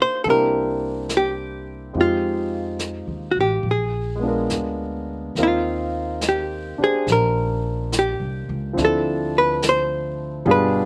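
Intimate and romantic, this jazz ballad excerpt swings gently in four, with a dark, clean, picked hollow-body archtop guitar carrying the melody up front, touched by slapback echo. A warm baby grand piano, also with slapback echo, accompanies from the start, while a woody pizzicato upright bass and a brushed kit of snare and hi-hat join at 0.3 seconds. The guitar turns to a solo at 5.4 seconds over a dry, close sound with little reverb.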